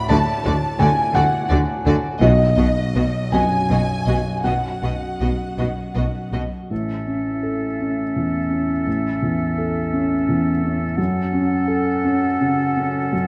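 A soft, intimate felt-muted upright piano with audible action noise opens this tender, uplifting cinematic fragment in a rubato 6/8. Lush bowed strings sound with it from the start: two violin sections carry the melody and a second line, a rich viola section and a clear cello section sit in the background, and a distant double bass section plays beneath. The strings stop at 6.4 s, and a bright clarinet, a light-vibrato oboe and an airy flute take up second lines over the piano until 13.3 s, in a dark production with moderate scoring-stage reverb.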